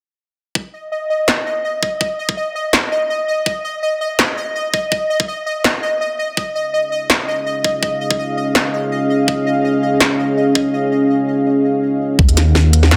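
Half-time drum and bass at 165 BPM in 4/4, with a light swing on the sixteenths, this heavy, spacious excerpt is cut from a longer piece. A layered, knocking electronic kick that sounds re-recorded in a small room opens at 0.6 seconds. It is joined almost at once by a bright, pulsing gated texture with chorus and its own reverb, and then by an industrial drum kit with a clanging snare and smooth, tape-warm hats. The harmony moves from an open start to Db at 6.4 seconds. At 7.4 seconds a dark analog pad arrives with deep, full-bodied, evolving chords, thickened by chorus and pumping against the sidechain. Near the close, at 12.2 seconds, a deep, rumbling detuned saw bass with a beating edge lands on Eb minor and sits loudest in the mix. The parts share a moderate digital room reverb under a dense, heavily limited modern master.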